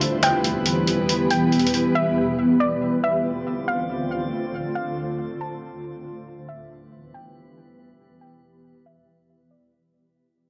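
A half-time 4/4 pulse at 139 BPM comes from a gritty, pitched-down, sampler-style trip hop kit of finger snaps and hi-hat, placed up front but heard only until 1.8 s, in this ethereal, melancholic cloud-rap excerpt cut from a longer piece. A blurred, detuned granular pad holds sustained chords moving from Em to Dm7 and back, while a soft, round pluck carries a dark melody through chorus, low-pass filtering and tape echo, and a quiet glassy texture of drifting overtones floats beneath. The whole passage sits in a lush digital hall reverb, with a filter sweep and a fade-out running across its 9.7 seconds.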